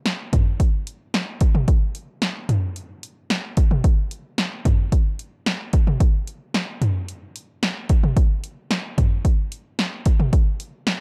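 A punchy analog drum machine opens this short pop excerpt at 0.1 s and carries it through to 11.0 s, laying down a straight 4/4 groove at 111 BPM. Its electronic kit of kick, snare, hi-hat and toms sits up front, with the kick and snare landing with a firm, punchy snap. The drum machine is the only part, so the whole passage rests on this one rhythmic voice within a single section. A digital ambience surrounds the kit, and the production has a dark, warm cast. The mood feels nostalgic and bright, evoking a retro electronic pop sound.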